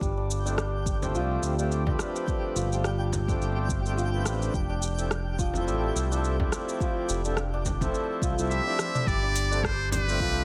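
Over a lightly swung groove of produced afro-pop drums with metallic hats, a deep electronic kick and a soft-handed frame drum in the background, this earthy, peaceful organic downtempo excerpt floats on a smooth, dark gliding synth bass, shimmering hammered santur arpeggios with digital delay, a reedy, breathing harmonium pumping through a low-pass filter and a twinkling granular texture, until a brilliant, buzzy muted trumpet steps up front at 8.5 seconds for a brief classical-style solo.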